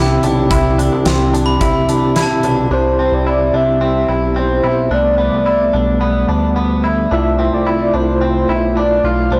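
A velvety synth lead carries the melody from 2.7 s, its detuned sawtooth tone smoothed with chorus, vibrato and delay, floating above a flute-like tonewheel organ holding sustained chords and a twangy, compressed clean electric guitar playing arpeggios. This dream pop excerpt at 109 BPM feels ethereal, with a glossy, chorused synth bass up front and, at the start, a sparkling glockenspiel in the background and a huge arena drum kit with a fat snare and punchy kick that drops out at 2.6 s. The chords move from C to Gadd9 to Dm7/C, and the whole recording sounds blown-out and overdriven under a light reverb.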